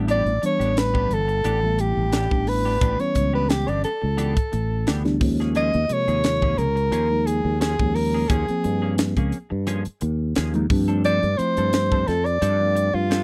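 A dry, close recording in a 1970s studio manner, touched with light reverb, frames this nocturnal, intense stretch of electric jazz fusion at 88 BPM in 4/4, swung on the sixteenths and cut from a longer piece. A smooth-topped soprano saxophone with light vibrato carries the melody up front over a growly fretless bass with subtle chorus and a polished drum kit with a high-tuned snare and punchy kick. Meanwhile, a clean tine electric piano with phaser sits in the background and a compressed semi-hollow guitar adds chorused stabs as the harmony moves from A9sus4 to Eb9sus4 at 5.2 seconds and G9sus4 at 10.7 seconds.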